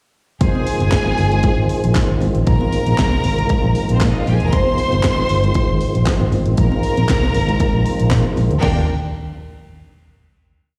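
Celebratory and glamorous, this short disco piece at 117 BPM rides a punchy four-on-the-floor house kit with clap-layered cracking snare and open off-beat hats, an up-front, round, foam-muted fingered bass playing a syncopated line with chromatic approach notes, a lightly overdriven tonewheel organ with key click and slow rotary speaker holding sustained chords, a focused string section running fast lines into held notes with slapback echo, and soft, high-tuned congas in the background, all moving between Fm7 and Bb9sus4 heard through a live venue's PA in recital-hall reverb before settling on a final Ebmaj9 at 8.6 seconds.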